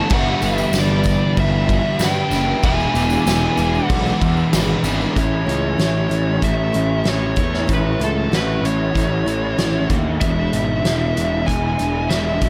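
A compressed fuzz lead guitar carries the melody through digital delay in this blissful, dreamy stretch of shoegaze and dream pop at 95 BPM in 4/4, cut from a longer piece. A growly, overdriven electric bass and a loose, roomy drum kit with a fat snare, punchy kick and dark cymbals sit up front, while a sludgy, double-tracked distorted guitar and a jingly tambourine drop out around 5.2 seconds, where the music settles into A major and moves from G6 and E7 toward Amaj7. Beneath it, an overdriven electric guitar riffs with ensemble chorus, a dark, clean fingered guitar adds reverse reverb, a boxy, shimmering twelve-string acoustic picks very quiet arpeggios, and an equally quiet, breathy pad with chorus and phaser holds sustained chords, all in light studio ambience.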